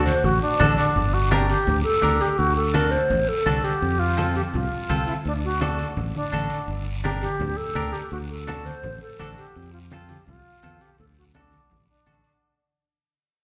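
Washed in the long, wet reverb of a recital hall, this fiery, danceable cumbia at 168 BPM is a short cut from a longer piece, with a fade-out running from 1.0 to 12.4 seconds as the chords cycle through D, Gm, D7 and F. An airy, vibrato-laden alto flute carries the melody up front with crisp attacks and a slightly unsteady tone, while a growly, punchy fingered electric bass sits just as close beneath it. A clean, compressed semi-hollow guitar picks the accompaniment, low-tuned congas ring softly in the background, and a raspy, close guiro scrapes along from 0.1 seconds.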